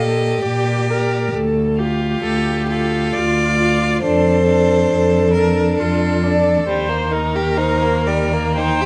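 In a flexible, rubato triple metre, this slow romantic passage for string quartet, cut from a longer piece, carries a yearning, melancholic mood across 8.9 seconds. A clear first violin sings the melody with smooth vibrato over the second violin's inner line and a rich, somewhat distant viola accompaniment, while an up-front cello plays the bass sul tasto with a soft attack and an airy, intimate bow tone. Close, detailed microphones capture the quartet in a recital hall with moderate reverb.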